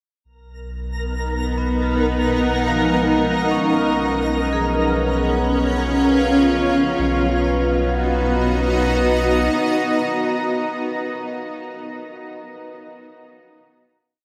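A deep, round sub bass opens this luminous, free-time ambient piece in B lydian, soon joined by a bright, up-front granular pad of blurred, slowly shifting chords, a sparkling FM shimmer holding a high note, ringing hard-mallet vibraphone arpeggios in slow, unequal loops with tape echo from 1.6 seconds, and a mellow, resonant analog drone with chorus from 4.9 seconds, all bathed in a dreamy, huge reverb as the music settles on a final Bmaj7 at 7.0 seconds.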